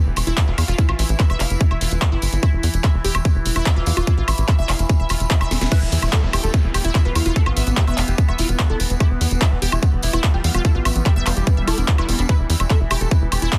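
A resonant sawtooth drone with moving overtones opens this driving, intense psychedelic trance excerpt, pumping under sidechain with chorus and phaser. A dark, punchy sequencer bass, an overdriven up-front kick, a drum kit of cracking snare, bright hi-hats, handclaps, crash and woodblock, a jingly background tambourine and a lush, detuned unison pluck riff with dub echo all arrive almost at once. A very quiet swell and downlifter enters at 5.1 seconds, and after a drum fill the drop lands at 5.7 seconds, where a thick, bold unison lead with vibrato, tape echo and cassette-tape colour carries the melody in a dense, heavily limited modern master.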